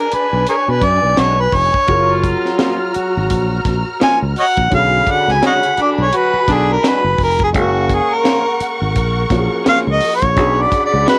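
A mellow, up-front harmonica solos through this romantic 1970s-style soul excerpt in F# major at 85 BPM, its scooped notes and tongue slaps riding over lush bowed strings with tape echo, an intimate grand piano in the background, a growly fingered bass, a tight funk kit with a high-tuned snare, a slightly broken-up guitar riff entering at 1.2 seconds, and smooth horn stabs from 1.9 to 6.8 seconds, all framed by light reverb and the character of a home cassette recording.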